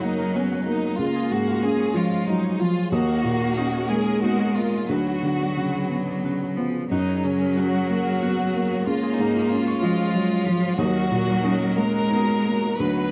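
A felt-muted upright piano sits up front, its mellow, intimate accompaniment carrying short, soft notes through this tender, hopeful neoclassical excerpt for piano and strings. Above it, a rich chamber violin section bowed with expressive vibrato sings the melody close to the listener, while a single clear cello traces a focused second line beneath. A very quiet chamber string section holds sustained chords with its own vibrato, and a concert harp, fingerpicked and ringing in the background, adds arpeggios touched by tape echo. The pulse moves in a rubato 6/8 at around 61 BPM in dotted quarters, tuned slightly high at A4 = 441 Hz, as the harmony cycles through F#add9, C#, D#m7 and Bmadd9/D before returning. Light reverb and a dark, warm production give the 13.1-second passage a gentle, enveloping glow.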